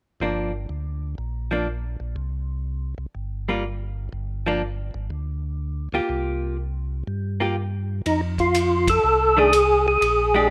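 A fat, lightly overdriven percussive tonewheel organ takes the melody at 8.1 seconds, its third-harmonic percussion, key click and chorus vibrato turning slowly through a rotary speaker, in this soulful, greasy soul jazz organ trio snippet cut from a longer piece. Before that, from 0.2 seconds, a clean, picked hollow-body electric guitar comps up front with a compressed tone, while a mellow, round tonewheel organ carries the bass line with its own slow rotary speaker and key click. The swung groove moves through Gm7, C5 and C7sus4 before arriving on F as the second section begins. At that point a soul drum kit joins on hi-hat, kick and ride, sitting low in the mix with dark cymbals, a tight kick and a rolled-off top in a small room. The band hits an accent together at 8.8 seconds, and the whole take has a rough home-demo feel with a light studio reverb.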